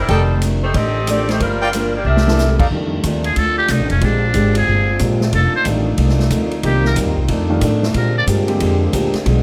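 A gritty, growling trumpet with metal mute takes the melody from 3.3 s in this joyful, swinging big band excerpt at 183 BPM in F mixolydian, after a clear saxophone section opens with the tune over warm trumpet section stabs and a drum fill, while woody pizzicato upright bass, picked steel-string acoustic guitar with finger squeak, an intimate concert grand piano in the background, soft-attack sustained saxophone chords and a punchy big-room drum kit with crash, hi-hat, ride, rim click and snare keep the swing going under light reverb.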